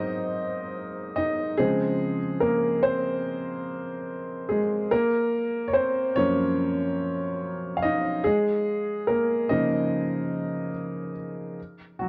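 A moderate plate reverb surrounds an intimate, up-front upright piano, its woody tone and audible action noise softened by a low-pass filter. This reflective, hazy hip hop fragment, cut from a longer piece, is a solo piano passage with a swung sixteenth-note feel, moving through Ab9, Dbmaj7, Gbmaj7 and Db69 with long sustain before the chords drop out at 11.6 seconds.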